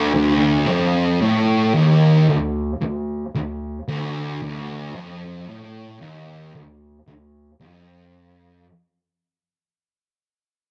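A straight 4/4 pulse at a slow 56 BPM carries this sludgy, heavy metal fragment in D phrygian, tuned to A4 = 441 Hz, where a lone picked electric guitar, thick with fuzz and double-tracked up front in the low register from D2 to A2, plays alone under light reverb in a dark, warm mix and fades out across the full 8.7 seconds.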